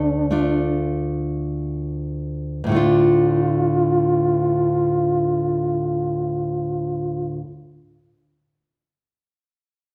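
A dark trombone sings a haunting, longing Celtic slow air over a bright, fingerpicked nylon-string guitar with fresh strings, both placed up front from the first moment in this short fragment of a longer piece. The trombone plays in a classical style with vibrato and a smooth top, unfolding in free time and slowing through the opening phrase before a second section begins at 2.7 seconds. A wet recital hall reverb, typical of a church or concert hall, lends the pair a spacious, haunting glow until the trombone ends at 7.4 seconds and the guitar at 7.5.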